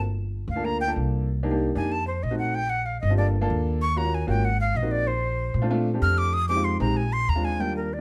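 Lively and sophisticated, this short jazz excerpt cut from a longer piece moves at a brisk, straight 4/4 pulse. A breathy, bright flute carries the melody as a solo, entering at 0.5 seconds with vibrato, a crisp attack and a touch of reedy chiff, ranging high into its upper register. Beneath it, an up-front baby grand piano supplies natural-sounding accompaniment in the middle register, while a pizzicato upright bass with steel strings adds a woody, growly foundation. The harmony travels through rich extended chords, from Gm7 and F7b9 to Ebm7, Ab9 and Bbmaj7 before landing on Bb9. Light reverb and a dark, warm production round out the sound.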